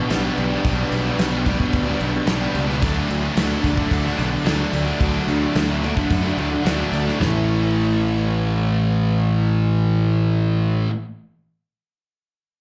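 Heard through a club PA with light reverb, this short cut from a longer piece of quiet-loud alternative rock moves at 110 BPM in A mixolydian with a bittersweet, cathartic mood. Three background guitars carry the riff: a bright, double-tracked cranked stack with overdrive and slapback echo, a compressed overdriven electric, and a thick fuzz guitar with distortion and slapback echo. A dark, round fuzz-fingered bass sits up front, and a very quiet, shimmering vintage string machine holds sustained violin chords. A loose indie kit with a tight kick and rolled-off top plays from the back until 7.3 seconds, just as the harmony settles from G and D onto Aadd9.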